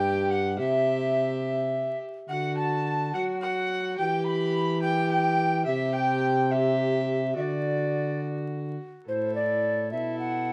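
From the first moment a distant, nasal gut-string violin carries the melody over an airy, chiffy tenor recorder second line, a reedy bowed viola accompaniment and a smooth, up-front trombone bass in this stately, festive renaissance-style consort dance in 6/8 at 71 BPM in D mixolydian, moving through C, D and Em before settling on an open A chord at 9.1 seconds, all heard in a stone-room reverb with dark, warm production and vinyl crackle in this short excerpt from a longer piece.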